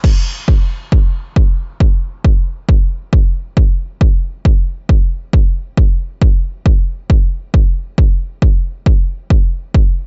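A straight 4/4 pulse drives this relentless, industrial techno excerpt, where a punchy, tape-warm analog electronic kick drum sits up front in a digital ambience with a dulled top end until it stops at 9.8 seconds.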